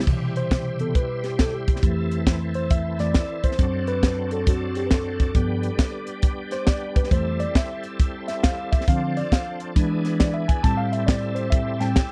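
A swung 4/4 groove at 136 BPM drives this jubilant, hopeful uptempo gospel passage in C major, cut from a longer piece, with a crisp fusion drum kit up front: punchy kick, high-tuned snare, hi-hat and dark crash cymbal. A mellow, clean tine electric piano solos from 0.1 seconds through changes moving from Cmaj7 and Fmaj7 to D7/F#, G7, Dm7, E7 and Am7, while a shouting tonewheel organ sits further back holding sustained chords through a slow rotary speaker and chorus vibrato. The sound is dry and close, in the manner of a 1970s studio recording.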